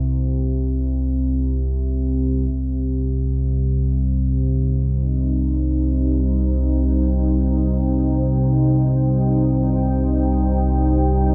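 Dark and cavernous, this ambient drone excerpt opens on a nasal, evolving analog drone with chorus sitting up front, joined at 3.6 seconds by a deep, moody pad of detuned sawtooth and sine layers carrying chorus and its own built-in reverb, the whole set in a huge ambient space.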